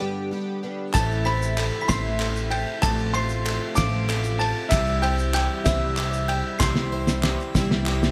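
A straight 6/8 feel carries this uplifting, anthemic indie folk excerpt. It opens on a shimmering, octave-doubled, chorused twelve-string acoustic guitar and a reedy pedal harmonium. At 0.9 seconds a dark, mellow upright piano takes the melody over a thumpy pizzicato upright bass up front and a muffled, cloth-damped drum kit of kick, fat snare and ride. They are joined by a bell-like glockenspiel second line, round harpsichord arpeggios in the background and distant group handclaps, with a grainy egg shaker slipping in a moment later. The arrangement builds toward a drum fill at 6.6 seconds under light studio reverb.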